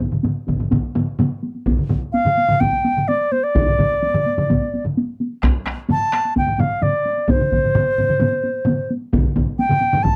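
Three taiko ensembles pound out a powerful, driving Japanese traditional groove in straight 4/4 at 128 BPM, one with heavy sticks and two with hard sticks in small and live rooms, and a fourth hard-stick ensemble joins at 0.5 seconds as the pace speeds up. At 2.1 seconds a bright, reedy baroque flute enters up front with a pure, straight wooden tone and crisp attack, carrying the melody between C5 and A5. The sound is dry and close, like a 1970s-style studio recording with light reverb, and the passage is cut from a longer piece.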